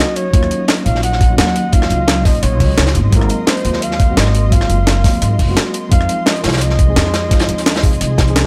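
A breathy, whispered flugelhorn carries the melody from the opening second, its dark, smooth-topped tone shaped by soft attacks and scooped notes and trailed by dub echo. This rolling, lush excerpt of liquid drum and bass moves at 172 BPM in straight 4/4, set in Eb dorian with tuning at A4 = 436 Hz, and drifts through Ebm9, Ab13 and Fm7. A mellow FM electric piano provides round, warbling accompaniment, with chorus, tremolo and a cassette-tape patina. Behind it, an ethereal pad holds sustained chords with a slow attack, a detuned unison shimmer and its own reverb. Up front, a woody, growly pizzicato upright bass with tube saturation enters at 0.3 seconds alongside a compressed, thumpy electronic kick. Two drum kits fill out the groove: a pitched-up, tape-warm jungle sampler kit of hi-hat, rim click and snare, and a saturated, high-passed breakbeat kit with a rolled-off top sitting in the background, all in a dry, close mix.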